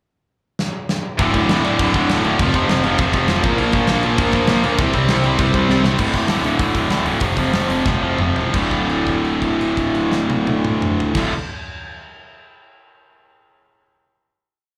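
Up-front tight distorted guitar drives eighth-note power chords through this angry, urgent punk rock piece in D minor at 169-201 BPM, joined by a scooped, compressed distorted guitar in the background, a very quiet double-tracked guitar ringing chords until 6.0 s, a growly fuzz bass pumping eighth notes, and a punchy acoustic kit with bright cymbals that opens with a fill before the band slows from 6.0 s into a held D minor chord at 8.5 s, all heard through a club PA with light reverb.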